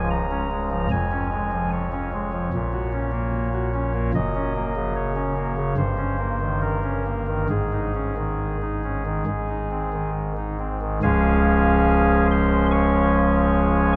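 A classical chorale-style piece for pipe organ, reverent and serene, moving at a rubato pace around 67-75 BPM in 4/4 and set in Db major with tuning at A4 = 438 Hz. A single chamber organ plays throughout the 14 seconds, voiced on a soft reed oboe solo stop with a chiff at the start of its notes, sitting up front and spanning from Db1 up to Db6. The harmony travels from Db through Gb and an Eb7 to an Absus4 that settles onto Ab, arriving back home on Db at 11.0 seconds as a new section begins. A cathedral reverb with a 6.0-second decay surrounds the instrument, and the production is dark and warm. This is a short cut from a longer piece.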